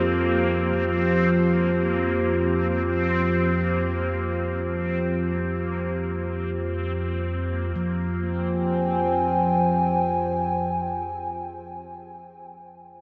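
Unfolding in free time, this ominous, desolate dark ambient drone in F minor, cut from a longer piece, sets a warbling, wave-folded analog drone and a nasal, detuned dark analog pad, both with chorus and up front, against very quiet, bronze-toned gamelan-type bossed gongs playing soft arpeggios and a reversed, granular backwards swelling texture that ends at 7.8 s, as the harmony shifts from Fsus2 to Fm, all bathed in a huge, wet ambient reverb.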